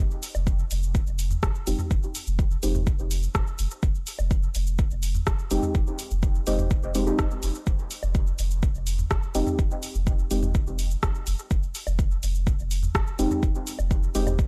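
A nasal, full-bodied chord stab enters at 1.7 s and sounds over a single Fm7 chord, colored with chorus, phaser, a filter sweep and dub echo, in this deep, nocturnal dub techno excerpt in F minor at 125 BPM in a straight 4/4. Beneath it, a round, soft sub bass and an up-front, layered electronic kick anchor the groove, while the bass, the stab and a tape-warm electronic woodblock and toms all pump with sidechain. A deep house kit adds dark hi-hats, rim clicks and shaker washed in dub echo, all set in a digital ambience with a gritty hardware character and transformer saturation.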